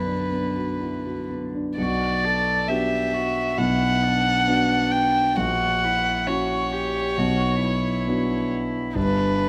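Yearning and melancholic, this brief excerpt of a slow romantic movement for piano trio unfolds in B minor at 67 BPM with a rubato feel, moving from Bm through F#7/A# and back to Bm before settling on G. A rich, intimate violin carries the melody up front with light vibrato, soft attacks and an airy sul tasto bow, while a pure, floating cello, also played sul tasto, traces a quieter second line beneath it. A concert grand piano with deep bass supplies the accompaniment, all three playing throughout in a moderate recital hall captured by close, detailed microphones.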